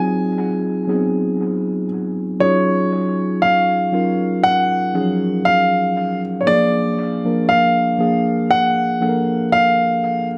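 A slow 59 BPM 4/4 pulse with a gentle sixteenth-note swing carries this longing, moody R&B fragment in Eb dorian, where an intimate grand piano with audible action noise sings a high melody between Db5 and Ab5 over a mellow, clean tine electric piano accompaniment, both sitting up front and trailed by dub echo, as the chords move from Ab7 to Ebm11 at 2.4 seconds and Bb7 at 6.5 seconds inside an echo-heavy mix of spring reverb and a small room.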